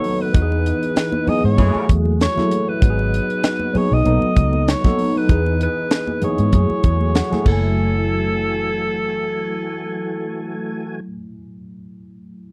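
A loping 97 BPM groove with a light 16th-note swing drives this short, bittersweet cut of lush 1970s-style soul in F# dorian, where a breathy alto saxophone sings the melody over phaser-tinged tine electric piano, a background tonewheel organ with slow rotary speaker and key click, a tight, up-front funk kit with a high-tuned snare, a dark, round, foam-muted bass, very quiet bright congas, and a distant horn-section stab at 1.6 seconds, with the electric piano adding a fill at 6.8 seconds before the drums stop at 7.6 seconds, all captured in a dry, close studio sound.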